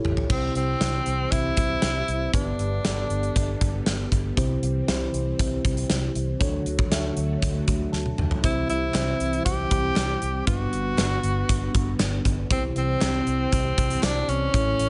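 Studio ambience frames a polished, gated, big-room 80s drum kit up front, its punchy kick and bright cymbals driving this uplifting, romantic 1980s-style pop excerpt at 118 BPM in 4/4 over chords moving through C, G and Dmaj7. A mellow tine electric piano with phaser and a dark, round, foam-muted fingered electric bass carry the harmony, while a vintage sawtooth string machine of violas sits very quiet underneath with ensemble chorus. An up-front tenor saxophone with vibrato, scooped notes and delay sings the melody, pausing at 3.8 seconds and returning at 8.4 seconds after drum and electric piano fills, with distant, hollow group handclaps joining at 8.9 seconds.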